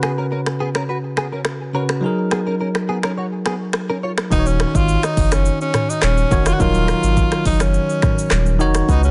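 A straight 4/4 afrobeats groove at 105 BPM drives this romantic, joyful excerpt, as an up-front electronic afro-pop kit with deep kick, snaps, claps, shaker and toms runs under a bell-like tine electric piano, while a bright, picked clean guitar riff with chorus and delay plays until 4.1 seconds, after which a thick, saturated sub bass and a clear, punchy tenor saxophone melody with vibrato enter at 4.3 seconds over chords moving from Db7sus4 through Gb69 to Ebm7, all in a dry, close sound.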